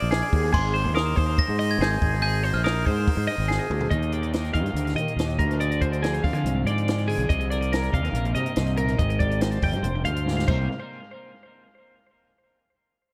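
An echo-heavy small-room mix frames this restless, intricate math rock and midwest emo excerpt at 142 BPM in 4/4, cut from a longer piece. A bell-like glockenspiel struck with soft plastic mallets rings out the melody until 3.7 seconds over tape-echoed arpeggios from a bright, twangy twelve-string electric guitar up front, a growly, fuzz-overdriven fingered bass, and a compact cocktail drum kit with dark cymbals, a high-tuned snare and a punchy kick. From 3.9 seconds a second, clean twelve-string guitar adds chorus-tinged accompaniment in the background as the chords move through Ebmaj7, Dm7b5, Cm7 and Abmaj7, with drum fills closing the first two sections.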